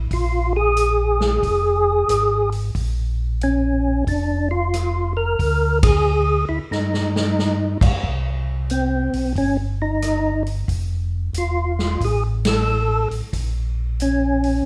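Soul jazz organ trio at a bluesy, swinging 91 BPM in Bb mixolydian, where a round, dark tonewheel organ carries the bass line through a slow rotary speaker and chorus vibrato. A second tonewheel organ takes the melody with a fat, lightly overdriven tone, key click and third-harmonic percussion, while a punchy, natural big-band drum kit swings the eighth notes. The trio hits band accents at 5.7 and 12.3 seconds, with a drum fill at 6.7 seconds, all set in a moderate large-studio reverb.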